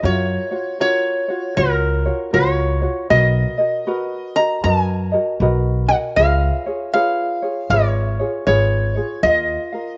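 A relaxed swing in 4/4 at 78 BPM sets a dreamy, languid Hawaiian mood in F# major, heard as a short section cut from a longer piece. Up front, a metal-body resonator slide guitar carries the melody with fingerpicks, its slide tone nasal and metallic, ranging from A#4 to A#5. A thumb-plucked ukulele supplies mellow, light accompaniment alongside it, while a pizzicato upright bass with steel strings adds a woody, warm low line before stopping at 9.5 s. The harmony moves from F#maj7 to Bmaj7 at 3.1 s and C#7 at 6.2 s, settling on D#sus2 near the end. Light reverb and small room ambience surround the acoustic trio, and the top end is soft, reaching only to about 7.5 kHz.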